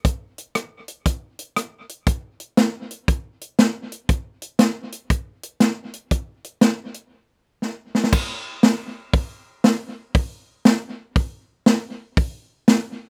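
This country excerpt carries a heartfelt, sunny mood, driven entirely by an acoustic drum kit in 4/4 with a 65% swing on the eighth notes. The kit sounds natural and up front, with bright cymbals, a medium-tuned snare and a punchy kick, joined by hi-hat, rim clicks and crash cymbal. A light reverb gives the drums an open, outdoor air. After the opening passage, a break arrives at 7.1 seconds, and a short drum fill at 7.6 seconds leads into a new section. The drums carry on until 12.8 seconds, where the cut-off from a longer piece comes shortly after.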